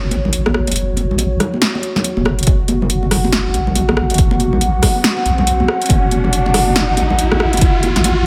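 A murky, heavy haze of light digital reverb hangs over this brooding deep dubstep clip, cut from a longer piece and sitting on a single F# minor chord at 140 BPM with a swung, half-time 4/4 feel. A wobbling, compressed bass with sine and triangle tones sits up front, its soft, warm low end touched with chorus. Above it, a dark analog pad holds sustained chords built from detuned square and sawtooth waves, with a wave-folded edge, a sub octave and a slow attack. A punchy, overdriven deep house kit of metallic hi-hats, rim clicks and snare plays from the start alongside bright, high-tuned congas that sound thin-skinned and vintage, trailed by dub echo. An overdriven electronic kick thumps in at 2.5 seconds, and an electronic riser enters at 4.4 seconds to push the build-up onward.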